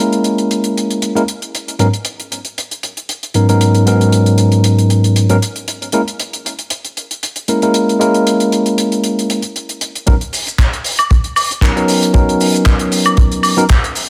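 Set at 116 BPM in 4/4 with a light swing on the sixteenths, this groovy, cosmic nu-disco excerpt rides on a damped 70s drum kit of handclaps, hi-hat, shaker and woodblock, dry and up front with a rolled-off top and studio reverb. A clean tine electric piano, played through a combo amp, carries the accompaniment with sidechain pumping and digital delay, moving through A#m7b5 and G#m11 chords. From 10.1 seconds a tight, dry kick drum joins for a build-up that shifts to F#add11, all set in light reverb and small room ambience.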